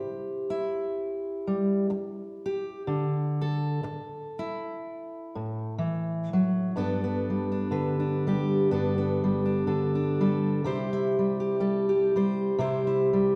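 This is a gentle, nostalgic folk piece, a short passage cut from a longer work and played by a single fingerpicked steel-string acoustic guitar. At a slow 62 BPM in 4/4 with a light swing on the eighth notes, the guitar stays in G major and spans G2 up to C5, tuned slightly high at A4 = 441 Hz. The harmony moves from C to Dsus2, and at 6.8 s a second section opens on Gadd9 before settling back onto C. The guitar sits up front with a warm tone, and finger squeaks on the strings add a human touch. A lush recital-hall reverb with a 1.5-second decay surrounds the playing and gives it the spacious air of a church or concert hall.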